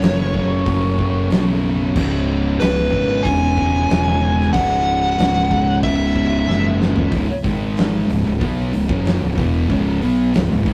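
Stoner and doom metal at 93 BPM in C# minor, heavy and ominous: an up-front, compressed fuzz lead guitar with digital delay carries the melody until 6.8 seconds over a growly, overdriven fingered bass, a pair of dark, picked fuzz guitars playing riffs (one in the background, one very quiet), and a very quiet, bright, double-tracked distorted guitar, while a big-room acoustic drum kit with a fat snare and punchy kick plays a fill at 6.5 seconds that leads into a new section at 7.1 seconds, all captured in a rough rehearsal-room sound with tube saturation and moderate reverb.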